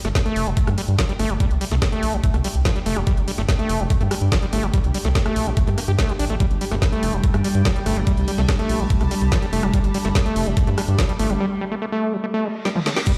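A squelchy, gritty overdriven acid bass riff drives this driving, alien psychedelic trance cut at 144 BPM, pumping against a knocking, distorted electronic kick and a deep, round analog bass, while a layered drum kit adds a woody snare, bright hats, rim clicks, toms and crashes in small room ambience, all heard in a bare, stone-walled room. An airy, breathy pad warbles softly in the background, and from 6.8 seconds an evolving wavetable pad holds a bright, morphing chord through a phaser. The bass and airy pad drop out at 11.4 seconds for a break, and a reverse cymbal and downlifter arrive at 12.5 seconds as a drum fill closes the passage.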